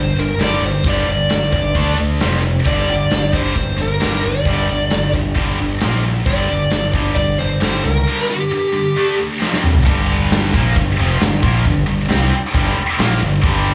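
A hard rock mix with light reverb and small room ambience puts every part up front in this driving, aggressive excerpt in G minor at 133 BPM. A dark, overdriven lead guitar with digital delay carries the melody until 9.2 seconds, over a bright, double-tracked high-gain guitar riff, growling fingered bass with punchy overdrive, and a big, airy drum kit with bright cymbals and a punchy kick. A drum fill at 9.4 seconds leads into a new section on G minor at 9.9 seconds, where the riff, bass and drums carry on to the end.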